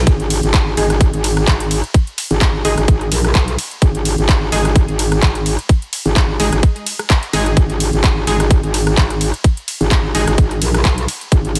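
Bass house at 128 BPM in 4/4, this swaggering, aggressive excerpt in G# minor carries a 16th-note swing of 55% and is cut from a longer piece. An electronic kick drum sits up front, tight and layered, while a garage drum kit adds handclaps, metallic hats, ride cymbal and rim click beneath it. A metallic wobble bass wobbles low between G#1 and B1, its saturated, compressed FM tone thickened with chorus and pumping against the kick through sidechain compression. From 0.8 seconds, an orchestra-hit-like synth stab cuts in with bold, punchy, detuned sawtooth bursts that are bright and short, bathed in built-in reverb, digital delay and sidechain pumping. The overall sound is dry and close, with little room ambience around the parts.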